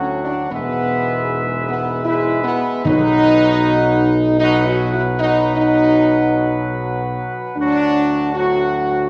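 A generous scoring-stage reverb surrounds this solemn, majestic classical fanfare excerpt in B major, moving at a stately 76 BPM in 3/4. Mellow trumpets carry the melody over sustained chords from the up-front French horns and the clear, vintage-tinged trombones with light vibrato, while a smooth-topped tuba holds the bass as the harmony moves from D to E to B and back to D. Between 2.9 and 4.0 seconds, timpani struck with hard mallets add an articulate accent from the background.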